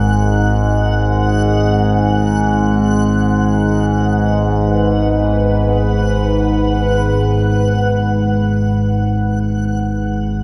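This brief dark ambient drone, lifted from a longer piece, opens with a low analog drone sitting up front: nasal and evolving, built from sawtooth and pulse waves with pulse-width modulation and a chorus sheen. Above it, a deep, moody analog pad fades in from the start, holding a single minor chord with an added ninth in the background with a full-bodied, detuned sawtooth-and-triangle tone reinforced by a sub octave. High above, a faint backwards swelling texture also fades in, a reversed, dreamy granular layer carrying its own reverb. All three parts sustain together for the full 10.4 seconds with slow, soft attacks and long releases. A huge, wet ambient reverb with a 7.7-second decay surrounds the mix, leaving an ominous, suspended atmosphere.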